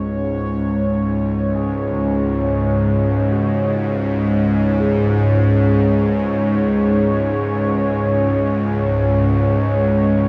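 Dark ambient drone, ominous and vast, cut from a longer piece and unfolding in free time. A tense, string-like bowed drone with vibrato and an evolving, bright sawtooth pad with chorus and a filter swell sit up front from the start. At 1.6 seconds a concert grand piano enters with very quiet, deep-bassed arpeggios, and at 4.8 seconds a mellow, metallic bronze singing bowl joins in the background, ringing softly with slow beating, all within an enormous, wet ambient reverb.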